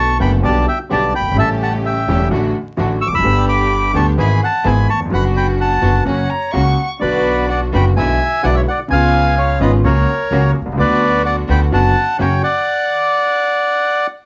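A rubato 4/4 pulse at 127 BPM carries this dramatic, tense tango in B minor, where a reedy, airy bandoneon sings the melody up front over a woody pizzicato upright bass and a clear concert grand piano with deep bass and short sustain. Bowed symphonic strings add smooth, even stabs in the background, and at 6.1 seconds a distant, straight-toned silver flute and an expressive solo violin with vibrato and portamento briefly join as a second line. The piano, strings, flute and violin carry a cassette-tape color, the take has the light reverb and vinyl crackle of a home cassette recording, and the bandoneon plays on alone after 12.4 seconds.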